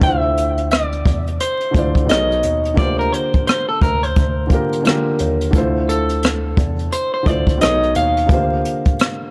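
Lo-fi hip hop at 87 BPM in D minor, swung on the sixteenths, with a hazy, reflective mood. A slightly broken-up electric guitar from a small old amp carries the picked melody over a soft, felt-muted upright piano with audible action noise and a cassette-tape tint, while a bell-like, clean tine electric piano plays the bass line. A jazz brush kit with a boomy kick, hi-hat and rim clicks sits up front, all in a dry, gritty, transformer-saturated mix with light small-room reverb and vinyl crackle.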